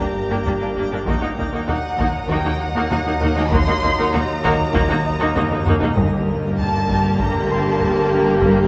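A compressed, saturated taiko ensemble struck with heavy sticks drives this tense, eerie stretch of suspense film score at 98 BPM in 4/4, with a drum fill at 5.4 seconds before a very quiet, close and dry timpani hit on G2 at 6.0 seconds. Over it, a con sordino violin section carries a veiled, lush melody up near C6. A second violin line sits in the background, and a third adds a high, faint texture. Muted violas and cellos supply rich accompaniment, a dark cello riff and a bass line, with the double basses joining them at 0.5 seconds. Warm French horns hold sustained chords behind the strings. A thumb-plucked, ringing concert harp, a twinkling granular layer with octave-up shimmer, and a resonant, evolving drone with chorus and sweeping overtones add an uneasy, otherworldly haze. The harmony shifts from G minor to E-flat minor and back, tuned slightly low to A4 = 437 Hz and set in a recital hall's reverb.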